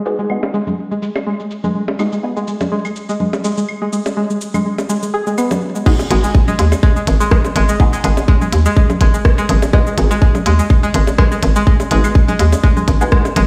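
Played through a big sound system in a bare stone room, this quirky, hypnotic minimal techno cut opens with a filter sweep as a twangy, nasal resonator pluck pumps under sidechain and trails digital delay over low-passed clicky hats, rim clicks, shaker and crash. Overdriven claves, bongos and congas trail tape echo, and muted, deep dub chord stabs carrying phaser and gritty 12-bit sampler colour sound briefly at the start before falling away. The drop at 5.9 seconds brings the stabs back along with a tight, up-front electronic kick, and at 6.1 seconds a hollow, bouncy FM bass enters.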